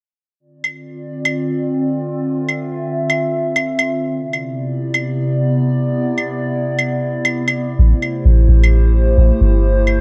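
Ghostly and melancholic, this future garage excerpt at 130 BPM with a swung 4/4 feel in D dorian opens with muffled, pitched-down claves at 0.6 seconds, followed by a warbling, nostalgic pad of detuned, slow-attack chords colored by chorus, reverb and phaser moving from Dm7 through Cmaj9 to Am7, before a deep, round 808-style bass arrives at 7.8 seconds to anchor the dark, lightly reverberant mix.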